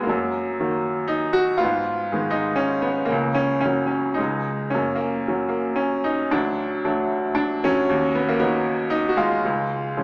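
A bright, woody upright piano sits up front in this short lyrical classical solo fragment, moving in a flexible, rubato three-beat lilt with a relaxed, hopeful mood. Its voicings stay between C#2 and F#4, and the harmony drifts through gentle changes before a striking turn to a D chord at 6.3 seconds, then settles back toward C# by 9.4 seconds. A wet recital-hall reverb gives the instrument an open, lingering halo.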